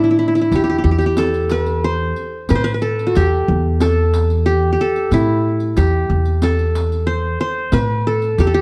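Melancholic and full of longing, this short excerpt from a longer Turkish makam ensemble piece moves at 92 BPM in a straight 4/4, set in makam huseyni on A with tuning at A4 = 439 Hz. The qanun carries the melody between D4 and C5, its plectrum-plucked triple strings sounding mellow yet bright-edged, placed up front in the mix. Beneath it, an upright bass played pizzicato on steel strings holds the low end from E2 to A2 with a woody, warm tone, also sitting close and present. The riq enters at 0.4 seconds, its bright jingles heard in the background with a vintage, band-limited character. Light reverb and a dark, warm production shape the whole passage across its 8.6 seconds.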